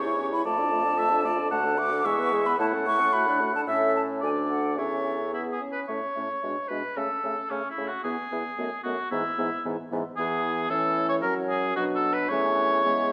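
A warm, up-front oboe carries the second line beside a hollow, airy silver flute melody with vibrato in this quick, stormy classical-period movement for wind quintet in A major, at 112 BPM in 2/4 and cut from a longer piece. A clear French horn with soft attack accompanies alongside a mellow, close-miked clarinet that sits in the background, while a vintage-toned bassoon holds the bass, all five playing throughout under a moderate stage reverb. A restless second section begins at 5.9 s and passes through F# and Bm before resting on A/E.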